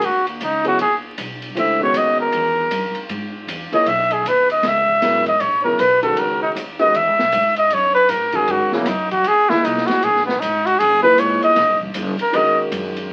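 A close-miked trumpet opens this cool, hypnotic passage of swinging modal jazz, its warm, vibrato-laden solo sitting up front from the first moment over upright bass and an acoustic drum kit. The plucked bass, woody with steel strings, sits low in the mix, while the drums bring a smooth, dark small-room sound with subdued cymbals, a medium-tuned snare and a boomy kick. At 0.6 seconds an open-sounding upright piano joins in accompaniment, adding a mellow wooden glow beneath the horn. The harmony moves from D# minor to a lingering C# minor ninth before returning to D# minor at 7.7 seconds, keeping the mood suspended and trance-like. Moderate studio reverb and the crackle of a very old 78 rpm record give the whole recording a vintage, faded patina.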